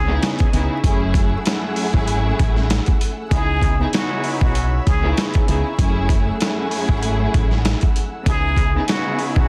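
A lightly swung 4/4 boom-bap groove from a gritty, pitched-down sampler-style kit with a thumpy kick, entering at 0.2 seconds and sitting up front, drives this moody, reflective hip-hop excerpt, where a round, punchy fingered dub bass and dark, bowed studio strings with expressive vibrato move between C#m7 and F#m7 beneath a jazz-style plunger-muted trumpet solo full of wah-wah and scooped notes with digital delay, while a thick, detuned sawtooth pad with chorus and phaser hangs in the background and the dense master is dusted with vinyl crackle.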